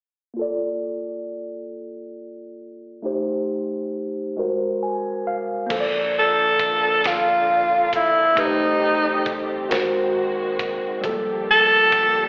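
Slow, intimate six-eight R&B at 45 BPM, cut from a longer piece, where a worn, slightly out-of-tune tine electric piano with slapback echo carries the opening chords under a filter sweep and a fill of its own until, at 5.7 seconds, a dark, lush string section, a rubbery square bass in the background and a dusty, gritty sampler-style kit with a thumpy kick and fat snare arrive, and at 6.2 seconds a breathy, whispered tenor saxophone with vibrato, scooped notes and slapback echo takes the tender melody up front over Bbmaj7, Am7b5, Ab9 and Gm9, all heard as a live gig through the venue's PA with recital hall reverb and a muffled telephone-like tone.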